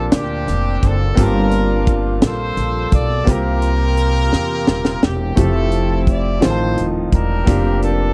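A slow 6/8 pulse at 57 beats per minute, counted in dotted quarters with a straight feel, carries this jubilant, uplifting gospel excerpt in F major, cut from a longer piece. A tight funk drum kit sits up front with a high-tuned snare, a tight kick and hi-hat, all heard in a natural small-room sound, and it plays a fill from 4.3 to 5.4 seconds. Beneath it, a woody pizzicato upright bass strung with steel holds the low end, while an intimate baby grand piano comps through rich chords, its action noise audible. A clear, tight horn section carries the melody with light vibrato and a jazz inflection, set back at a roomy distance. The harmony moves from Bb69 through Gm11 and C7sus4 to Fmaj9 and F7 before settling on Bb69/F. The whole recording is dry and close, in a 1970s studio style with little reverb.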